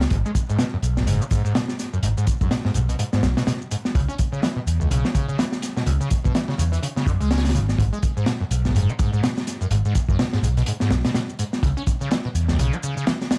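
Gritty and swaggering, this short cut of breakbeat runs at 125 BPM in G# minor, with a 58% swing on the sixteenths and chords moving between G#m and C#m. A crunchy, saturated breakbeat kit with a punchy kick and high-tuned snare sits up front beside a growly, overdriven picked electric bass, while a layered electronic shaker stays in the background. Over them a squelchy, screaming acid line with a sawtooth bite carries distortion, lush chorus and digital delay under a filter sweep, all set in a dark production with light reverb, vinyl crackle and faint mains hum.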